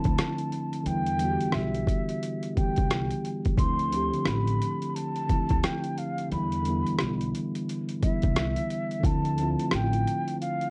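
A swung boom bap groove at 88 BPM in 4/4 opens this short fragment of a longer lo-fi hip hop piece, its sampler-style kit of hi-hat, thumpy kick and rim click sitting up front, pitched down, compressed and gritty with overdrive. An acoustic upright bass joins at 0.1 seconds with woody, growly pizzicato on steel strings, playing low until 10.0 seconds. A clean tine electric piano, filtered and heard through its built-in speakers, holds the accompaniment up front, moving between Dm9 and Em7 in D dorian. Above it, a breathy concert flute carries an expressive melody between E5 and C6, its crisp attack, vibrato and rolled-off highs softened by a low-pass filter and trailed by analog delay. Light reverb and worn cassette tape with warbly pitch drift give the reflective, melancholic mood a faded, mellow glow.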